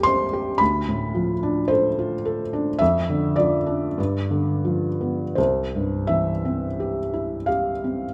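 Nostalgic and tender, this short fragment of a romantic classical nocturne unfolds for solo piano in a slow, rubato four-beat pulse. A felt-muted upright piano carries everything from 0.0 to 8.1 seconds, ranging from A1 up to C6 with a soft, mellow, intimate voice that sits up front, its audible action noise adding a close, private quality. The harmony drifts from Am7 through Dm7 and Dm/F to G7 before settling on C at 5.4 seconds, giving the passage a gentle sense of arrival. A moderate large-studio reverb lends the muted tone a touch of space around it. Being cut from a longer piece, it feels like a quiet glimpse into a larger reverie.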